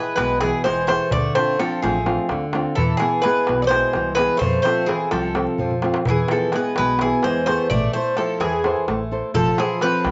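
Set in a straight, driving 7/8, this dramatic Greek folk bouzouki-band passage is cut from a longer piece and sounds dry and open-air, its top end rolled off. A brilliant, metallic bouzouki carries the melody up front with slapback echo, while a mellow second bouzouki plays a lower line and a fingerpicked flamenco guitar, also forward in the mix, supplies warm accompaniment through chords moving among E, Dm7, F and Am. A woody, dark pizzicato upright bass and a crisp, compressed, saturated metal-shell darbuka played with hard hands join at 0.2 seconds, and the darbuka plays a fill from 5.6 to 6.1 seconds.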